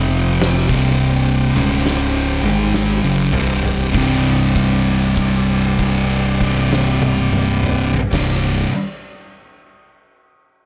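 Two thick fuzz guitars, one dark and one warm, open this ominous stoner-doom fragment with a distorted riff up front, over a growling, overdriven picked bass and a fat, lightly overdriven tonewheel organ holding sustained chords through a slow rotary speaker in the background, all crawling at 49-53 BPM in 4/4 on C minor. An oversized, low-tuned acoustic kit with a punchy kick, fat snare and dark cymbals, gritty and saturated in a bright stone room, enters at 0.4 seconds and plays a fill from 1.6 seconds as the band slows. At 3.9 seconds everything lands on a C5 power chord held until 8.1 seconds, with small-room ambience around the sound.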